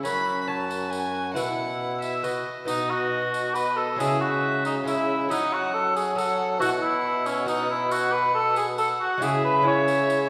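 An up-front cor anglais carries a mellow second line with light vibrato, sitting just beneath a rich, gut-string solo violin that plays the bowed melody between D#5 and B5 in a period style. This excerpt is a stately, courtly Renaissance-style consort dance in 3/4 at 137 BPM, with a straight feel. A delicate, bright lute, fingerpicked on double gut strings with some octave-doubled courses, supplies the accompaniment, while a roomy, distant bassoon with light vibrato enters at 0.1 s to hold the bass. A jingly, saturated tambourine sits quietly in the background. The harmony moves from F#m through Bsus4 and B to C#m, then returns to F#m and Bsus4, passes through B5, and closes on C#m at 9.2 s. The ensemble is heard in a reverberant church or concert hall with a two-second decay, and a layer of vinyl crackle adds an aged patina.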